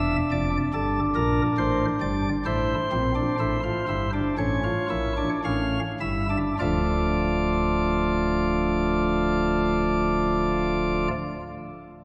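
A chamber organ with light, sparkling flute stops and audible chiff plays up front, alone from 0.0 to 11.1 seconds, in this short extract of a baroque-style three-part fugue in D minor, driving yet contemplative at 50-74 BPM in straight 4/4; it slows through the first 6.6 seconds over a Dm, Gm, A7sus4, A7 progression, lands back on Dm, and rings in a long, wet church reverb.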